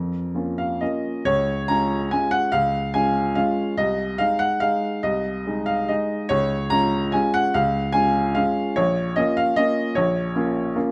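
A close, detailed recording with a touch of light reverb puts a baby grand piano up front, its tone open and warm. This short excerpt, cut from a longer classical piano waltz in 3/4, moves with a flexible, rubato feel that gives it a wistful, elegant mood. The piano plays alone throughout, ranging from Bb1 up to Bb5. After a brief opening passage on a Bb minor chord, a new section begins at 1.3 seconds and settles into Db major, passing through Ab/C and back to Db before returning to Bb minor at 8.8 seconds. The clip ends at 10.9 seconds.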